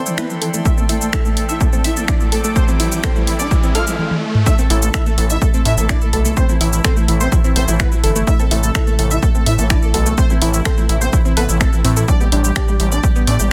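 A dense, heavily limited modern mix with light reverb opens this dramatic, cinematic slice of melodic techno, cut from a longer piece. A build-up begins with filter sweeps on a soft, round pluck playing arpeggios, a smooth portamento lead carrying the melody in the background with lush chorus and delay, and a fat, detuned polysynth adding a bright second line. Underneath sit a very quiet, morphing wavetable pad holding sustained chords, a faint electronic riser, and a floating chamber string section that drops out at 4.0 seconds. A house kit of finger snaps, tape-warm hats, shaker and toms, with soft clipping on the snare, runs alongside a punchy, up-front electronic kick, and a drum fill leads into the drop at 4.5 seconds. A gritty, wave-folded synth bass enters at 4.7 seconds, and it pumps with the sidechain along with the lead, polysynth, pluck and strings, while the harmony rests on Am before shifting to G near the close.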